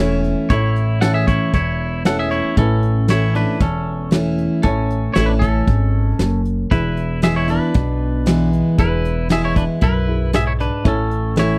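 A dry, close recording with a 1970s studio feel carries this easygoing, down-home honky-tonk and classic country excerpt, built on a straight 4/4 that moves from A to E and back. A bright, clean, twangy electric guitar takes the melody, while a full-bodied dreadnought acoustic guitar sits up front with audible finger squeak, and a boxy upright piano with short sustain stays in the background. A woody, thumpy pizzicato upright bass anchors the low end beneath a soft brush kit with a punchy kick, which enters at 0.2 seconds.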